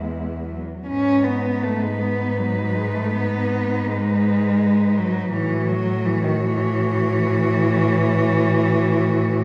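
Serene and lyrical, this classical excerpt for four bowed cellos moves in a slow, rubato 12/8 at around 48-57 BPM, drifting from E through G#m to A6 at 5.3 seconds. A warm, smooth cello sings the melody high in its range while a rich, even second line sits in the background, and up front a soft-attacked accompanying cello leans into expressive portamento over a clear, focused bass, all four shaded with vibrato. The ensemble is heard from further back in a reverberant recital hall, giving the short passage a spacious, glowing air.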